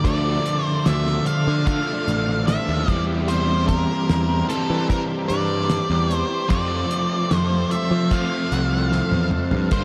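A dreamy, reverb-soaked mix with a huge ambient tail frames this short, hypnotic and dark psychedelic rock excerpt, moving at a straight 74 BPM in 4/4 over a Dm, C/E and F progression. Up front, an octave-fuzz lead guitar carries the melody with a dark, distorted edge and a diffuse ambient delay, while a double-tracked, overdriven semi-hollow guitar plays a riff through a rotary speaker. A growly, round fuzz bass gives punchy low support, and a bright, shouting tonewheel organ sits in the background with sustained chords, colored by a slow rotary speaker, light overdrive and chorus vibrato. The damped 70s drum kit is dry and smooth, with a fat snare, tight kick, hi-hat and toms, and plays a fill from 8.9 to 9.7 seconds. High-tuned, thin-skinned congas enter at 1.0 seconds, barely audible beneath the rest.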